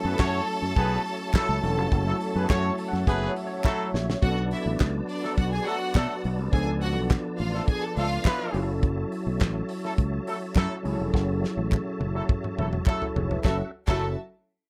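A sultry, danceable disco groove opens with strings, electric piano, organ, horns and bass sounding together, and a damped 70s drum kit and group handclaps join at 0.2 seconds. The drums sit up front with a fat snare and tight kick under a rolled-off top. The fingered electric bass is punchy and also up front. A barky, lightly overdriven tine electric piano carries the accompaniment through analog chorus and plays a fill from 2.5 to 4.2 seconds, while a dark, round tonewheel organ holds sustained chords with key click and a fast rotary speaker. Mellow, roomy horn stabs with octave doubling sit at a distance, and a clear, lush string section plays a second line until 8.5 seconds, then returns briefly at 13.4 seconds. The harmony moves from F#m7 through Bm7 and C#7b9b13 back to F#m7, with drum fills leading into each new section in this excerpt cut from a longer piece.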